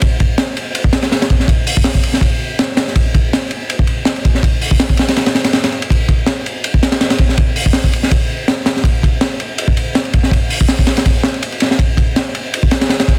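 A dense, heavily limited modern mix with light reverb frames this raw, atmospheric drum and bass excerpt, where a crunchy, saturated acoustic breakbeat kit, captured in a small room, sits up front for the full 13.2 seconds, pairing a punchy kick and high-tuned snare with dark cymbals, ride and hi-hat under a rolled-off top and a gritty, lightly swung 16th-note feel.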